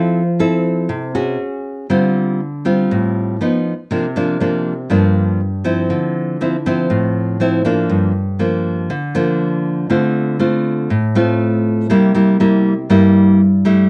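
A straight 4/4 pulse at 120 BPM carries this smooth, melancholic bossa nova in D minor, tuned slightly low to A4 = 436 Hz and cut from a longer piece. A solo nylon-string guitar, fingerpicked in a classical manner and placed up front with a full-bodied tone, moves through chords such as Fmaj7, Dm7 and C9sus4 before shifting at 7.9 seconds to a passage built on Gm7, Dm7 and C7. Light reverb and a dark, warm production wrap the instrument.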